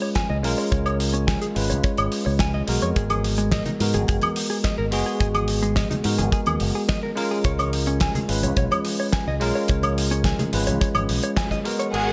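Bright 1980s-style digital production with plate reverb frames this sleek, sensual nu-disco cut, where a bell-like tine electric piano pumping through analog chorus and a scooped, clean electric guitar riff ride over a fat-snared 70s drum kit with gated reverb, a tight kick, an envelope-filtered fingered bass and very quiet low-tuned congas entering at 3.1 s, before a band accent at 11.4 s and a brief arrival of a clear chamber violin section and a rich, pumping studio string section at 11.9 s.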